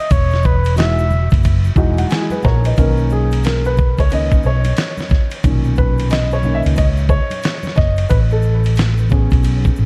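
A round, up-front fretless electric bass with ensemble chorus anchors this warm, cool jazz-hop fragment, where a warm flugelhorn with light vibrato and analog delay opens the solo over Emaj9 before a dark, short-sustain grand piano with its own delay fills at 1.4 seconds and takes the solo from 2.8 seconds over Bmaj9 and Amaj9 chords, while a gritty, compressed sampler-style drum kit with a thumpy kick and fat snare swings beside close, dry shaker and congas in the background, all set in a small, echo-heavy room with vinyl crackle.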